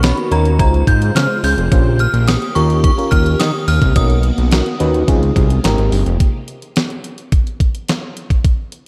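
Early-eighties boogie funk at 107 BPM, danceable and slick, built on a fat, sawtooth-edged analog bass sitting up front and a detuned 8-bit digital drum machine with a thumpy kick, medium-tuned snare, hi-hat and handclaps that sounds re-recorded in a large room. Over a progression moving from Bmaj7 through Bbm69 and Eb7 to Abmaj9, a mellow, inharmonic synth chime carries the melody with ensemble chorus, phaser and analog delay, while a glassy FM electric piano with a bell-like attack adds chorused, phased accompaniment, and a swirling, vintage phased string machine holds bright sustained chords in the background under light reverb. At 6.2 seconds the other parts stop and the drum machine plays alone until the fragment ends at 8.9 seconds.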